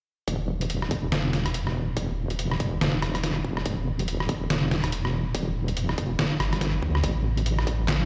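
A swung, half-time 4/4 groove drives this brooding, cavernous deep dubstep build-up cut from a longer piece, where a heavy, detuned sawtooth wobble bass with chorus sits up front from 0.3 seconds alongside a tight, layered electronic kick drum and a muffled, pitched-down trip hop sampler-style kit of handclaps, hi-hat, rim click and snare, all heard through a big sound system in a bare room with large studio reverb.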